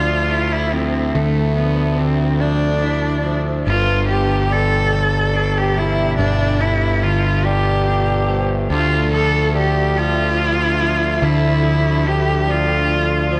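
Post-rock at a slow 48 BPM in 6/8, melancholic and cathartic, moving between Dmadd9 and G in a short cut from a longer piece. A dark, bowed cello carries the melody up front with vibrato and digital delay, over a punchy, overdriven fuzz bass. A very quiet, twangy, slightly broken-up electric guitar plays arpeggios alongside a ringing vibraphone with slapback echo and a slow motor vibrato, which sits in the background. A warbling, lo-fi tape-like pad with chorus and phaser sustains detuned chords underneath, and a lush hall reverb gives the whole piece a big arena sound.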